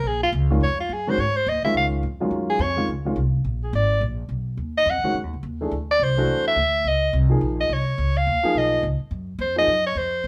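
A brisk swing at 212 BPM in 4/4, with eighth notes lightly swung, drives this short late-night jazz excerpt cut from a longer small-group performance in the swing and bop tradition. A bright soprano saxophone carries the melody from the first second to the last, its punchy, forceful solo voice colored by a light vibrato and sitting up front. Beneath it, a pizzicato upright bass on steel strings gives a woody, growly low end for the full 10.3 seconds, while a dark baby grand piano enters at 0.5 s with mellow, intimate accompaniment whose short sustain and audible action noise keep it natural and close. The harmony moves from Bbm7 through Gbsus2, Bb7b9, Ebm9 and D9 to Dbmaj7 and a closing Gbmaj7(b5) voiced with its third omitted, with the second section beginning at 2.3 s. The trio sounds like a band playing live in one room, wrapped in a moderate studio reverb.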